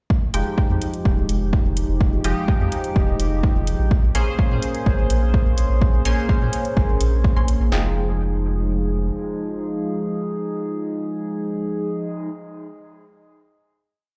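An overdriven deep house drum kit, re-recorded in a large room with a deep four-on-the-floor kick and punchy snare, anchors this meditative, cavernous dub techno piece in F minor at 126 BPM, joined by dry, metallic closed hats, a round, nasal analog bass in a dotted rhythm with tube saturation and sidechain pumping, a juicy, resonant polysynth with a filter sweep, chorus and phaser playing sparse echoing chord stabs, and a muted, detuned filtered dub stab set in the background, as the groove moves from Fm9 to Bbm9 before the kit stops at 7.8 seconds and a final Fm9 chord rings on until about 12.4 seconds.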